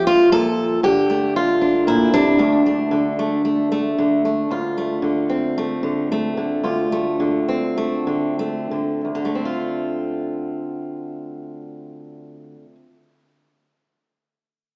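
Wistful and intimate, this folk excerpt features a solo fingerpicked steel-string acoustic guitar, heard up front with a warm concert tone from 0.0 to 13.0 seconds, moving freely in rubato through chords such as Bbmaj7, D5 and Dm7. The playing slows between 4.5 and 9.0 seconds, lending the passage a reflective, lingering quality. A wet recital-hall reverb surrounds the guitar, though the overall sound has a small-speaker character.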